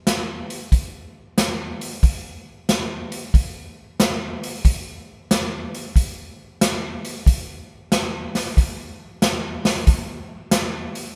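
A swinging big-band drum kit carries this short jazz passage on its own, its hi-hat, kick drum and snare drum sitting up front in the mix from 0.1 to 11.1 seconds. The feel is soulful and swinging, with a swing on the eighth notes in a steady four. The kit sounds acoustic and polished, with an airy hall quality, a punchy kick and a medium-tuned snare. Light reverb gives the sound a sense of space. Cut from a longer piece, the fragment plays as one continuous section.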